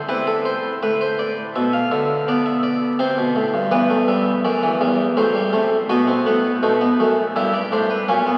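A lone harpsichord, close-miked, bright and plucked with a full Flemish-style single-string voice, carries this elegant, lively baroque-style four-part fugue at 82 BPM in 3/4, its chords moving from Amadd11 through F#dim/A to a B chord and settling on Em/G by 7.4 seconds, all set in a wet cathedral reverb and heard through the crackle of a very old 78 rpm record in this short cut from a longer piece.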